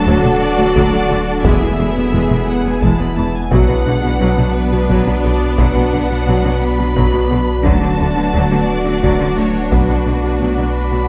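A distant, lush orchestral sound sits in a wet concert hall, giving this brooding, relentless cue from a hybrid orchestral and electronic film score a deep sense of space. At 58 BPM in a straight 6/8, in B minor, the strings carry the weight: a clear, intense violin section sings the bowed melody with vibrato above a second violin line, while a smooth viola section, mellow French horns and a very quiet cello and double bass sections fill the middle and low end. Beneath them, a deep, moody sawtooth pad with chorus and its own reverb holds dark sustained chords, and a punchy sine sub bass with a pitch-drop attack anchors the bottom. A round, tine-like synth pluck, very quiet and coloured with chorus and a noise layer, spins arpeggios throughout, and heavy-stick taiko drums, compressed and saturated, pound from the background. The harmony moves from D to E and settles on B minor, returning through D to B minor, and at 10.8 seconds a single expressive violin with portamento touches a high B5 as the passage is cut off.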